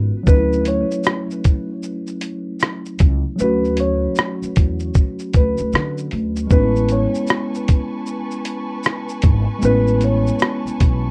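A mellow tine electric piano, filtered and tape-softened, opens this cosy, nostalgic lo-fi hip hop excerpt at 77 BPM alongside a woody pizzicato upright bass. A gritty, compressed sampler-style kit of thumpy kick, hi-hat, rim click and shaker sits up front with a swung sixteenth feel, while a felt-muted upright piano carries an intimate, boxy melody with audible action noise and tape echo over Dmaj9 moving to Amaj9. At 6.5 seconds a lush, bowed studio string section slips in quietly with focused vibrato, all wrapped in light reverb and the warble of worn old tape.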